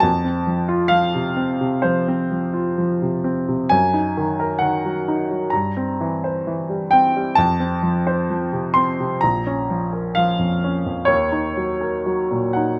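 A clear grand piano carries this romantic nocturne excerpt alone, its tone present and up front, reaching from the deep bass of Bb1 to a bright C6. The mood is melancholic and yearning, and the unhurried pulse bends freely with rubato in a gentle four-beat metre. The harmony moves from F through darkened shadings of Ebm over Gb and a C7 over G, returns to F, then slips toward Bbm and settles on Ebm7 near 11.1 seconds, leaving an unresolved ache. Close, detailed microphones capture the instrument intimately, while light reverb lends a soft sense of space. Cut from a longer piece, the passage lasts just under thirteen seconds.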